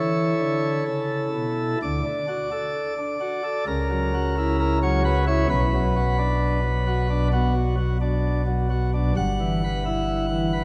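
A chamber organ's principal chorus plays alone and up front, its full, chamber-voiced sound carrying chiff across a span from G1 to F#5 in this majestic, reverent classical chorale. The brief excerpt moves into a second section at 1.8 s, with harmonies passing from D through F#7/C# and Bm to Em/G. A wet church reverb with a 3.0-second decay and a dark production surround the organ.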